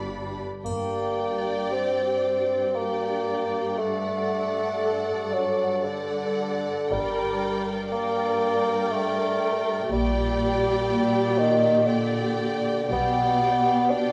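Bowed strings open this tender, lyrical slow romantic movement in G minor at 59 BPM in a rubato 3/4, with lush violins carrying a focused, vibrato melody over a soft-attack second violin line, dark expressive violas, rich even cellos and double basses that return at 6.9 seconds, while a mellow, roomy bassoon joins up front and a faint triangle sounds in the background from 0.7 seconds, all inside a stone room reverb.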